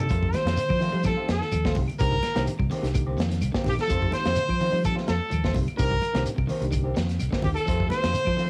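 Recorded at home on cassette with light reverb and a touch of studio ambience, this funky, hypnotic afrobeat excerpt moves at 127 BPM in a straight 4/4, centred on F mixolydian and cycling between F7 and Cm7. A bright, distant trumpet carries the melody up front with light vibrato, shadowed by a breathy, whispered alto saxophone on a second line further back, both with a cassette-tape colour. Underneath, a reedy electric piano with fast tremolo plays accompaniment through its built-in speakers, while one electric guitar at the edge of break-up picks very quiet arpeggios and another, through a small old amp, adds lo-fi stabs from 0.1 seconds. A round, dark fingered electric bass anchors the low end, and a crunchy, gritty breakbeat kit with a punchy kick, a medium-tuned snare, hi-hat and toms sits up front with a rolled-off top. Very quiet hard-hand congas join a grainy shekere and woody, saturated claves, the latter two filling in the percussion in the background.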